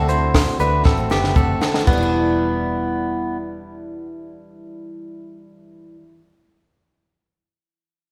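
A straight 4/4 pulse carries this wistful, bittersweet snippet of jangly indie pop: a dark, small-room cocktail drum kit with a high-tuned snare and punchy kick plays a fill from 0.9 s and drops out at 2.0 s as the harmony moves from D7 to Em7, while a full-bodied jumbo steel-string acoustic guitar picks the accompaniment, a round, foam-muted vintage electric bass holds the low end, and a twangy, direct-recorded clean electric guitar spins compressed arpeggios through spring reverb until 3.4 s, all set in a lightly reverberant mix.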